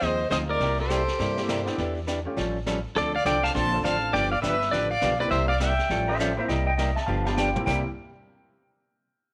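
A bright, twangy pedal steel carries the melody over a smooth, rich fiddle line, dark hollow-body archtop, growly upright bass and vintage brushed drums in this playful, down-home western swing excerpt at 204 BPM in C mixolydian, with a clear, intimate upright piano entering at 0.3 seconds and a clean lap steel taking over the second line at 6.1 seconds before a drum fill at 7.1 seconds, all in a small room with light reverb.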